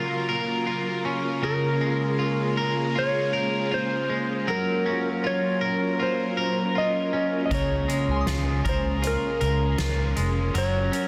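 Dream pop at 79 BPM in 4/4 with a straight feel, this short excerpt in Db major has a dreamy, floating mood, moving between Gbmaj7 and Db6 chords. A string machine voicing violas holds mellow, sawtooth-edged chords with a soft attack and ensemble chorus, while an electric guitar at the edge of break-up sits up front playing twangy, picked arpeggios through subtle chorus and digital delay. From 1.4 seconds a clean lap steel guitar carries a dark, sliding melody, also sent through digital delay. At 7.5 seconds a vintage muted fingered electric bass arrives, round and punchy, alongside a soft-mallet drum kit of hi-hat, boomy kick and fat snare with a natural hall sound. A soft FM synth bell adds pure, decaying texture in the background with chorus and delay from 8.1 seconds. The whole mix floats in a huge ambient reverb and is finished with a dense, heavily limited modern master.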